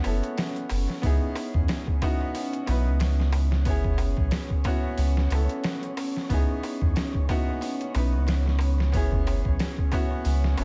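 Smoky and cinematic, this trip hop fragment at 91 BPM in C# minor rides a gritty, pitched-down sampler-style drum kit with a thumpy kick and a very quiet, crisp metal-shell darbuka, while a deep, round sub bass sits up front beneath a bright, woody upright piano treated with harmonic tremolo and tape echo, a warbling, nostalgic lo-fi pad with chorus and phaser in the background, and an airy, wind-like noise texture that enters at 0.9 seconds, the chords cycling between F#7sus4 and C#m7 over a swung 16th-note feel in a dry, echo-heavy mix.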